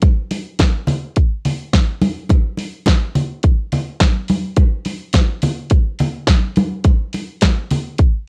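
A house drum kit and congas open together on this short disco clip, cut from a longer piece, setting a glamorous, driving mood at 106 BPM in a straight 4/4. The electronic kit sounds layered and produced, with a punchy kick, a punchy snare and bright hi-hats sitting up front, all colored by a cassette-tape character. The acoustic congas ride a little lower in the mix, their thin, medium-tuned skins carrying a bright tone and the air of a live room while still sounding close. Light reverb and the grain of a home cassette recording give the whole a homespun finish. The congas drop out at 7.8 seconds, and the kit carries on briefly until 8.1 seconds.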